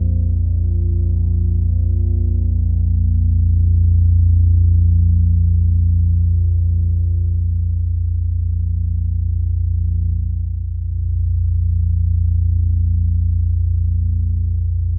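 Ambient music in free time, tuned to A4 = 436 Hz, with an unsettling, ominous mood, heard as a 15-second fragment cut from a longer piece. A single deep rumbling drone plays solo from 0.0 to 15.0 s, sitting low between Bb1 and F2 on a Bb5 chord. Its dark blend of triangle and sawtooth tones has a slow attack, long sustain and long release, and it is treated with its own reverb and a phaser and placed up front in a cassette-tape recording with light room reverb, moving into a new section at 10.2 s.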